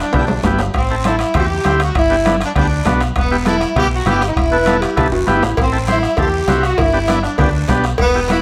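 A warm saxophone section leads this driving, danceable cumbia, playing the melody up front with vibrato, a soft attack and a jazz-style ensemble sound. Underneath, a deep, dark and round fingered electric bass lays a punchy foundation, while a buzzy vintage combo organ supplies clean, lightly wavering accompaniment over a minor-key cycle of chords. The percussion is busy and acoustic: a compressed, saturated bombo with a soft beater, ringing congas and metal-shell timbales with cowbell set in the background, and a raspy guiro, with drum fills opening the passage at 0.1 seconds and returning at 5.1 seconds, just before the second section. From 4.5 to 5.6 seconds a breathy, subtone clarinet slips in with a vintage, lightly trembling second line touched by tape echo. Moderate studio reverb gives the ensemble a sense of space as the opening phrase repeats in this short cut from a longer piece.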